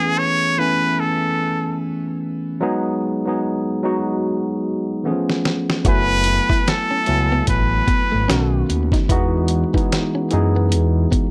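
R&B with a neo-soul lean at a slow 74 BPM in E major, this sensual, soulful passage opens with a breathy, nasal muted trumpet carrying the melody over a worn, slightly out-of-tune tine electric piano that is lightly overdriven through a combo amp. A gritty, compressed sampler-style drum kit with a thumpy kick enters at 5.3 seconds, and at 5.9 seconds a dark, gliding sawtooth synth bass with portamento and vibrato joins, along with a clean picked electric guitar tucked in the background with tape echo. The chords move through extended harmonies such as Amaj9, C#7b13 and F#m11 before landing on Emaj9, with a swung sixteenth feel and a moderate studio ambience giving the piece an intimate, close sound.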